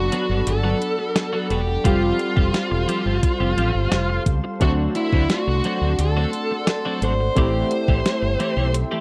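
1980s-style pop in D mixolydian at 87 BPM, glossy and nostalgic, this short excerpt sets a dark, overdriven bluesy lead guitar with slapback echo over a thumpy, up-front 12-bit drum machine, a round fretless bass, detuned sawtooth analog keys with chorus, a twangy, compressed twelve-string riff and a glassy, ethereal FM pad, all moving through Gmaj7, Fsus2, D7 and Am7 in a dry, close 1970s-style studio sound.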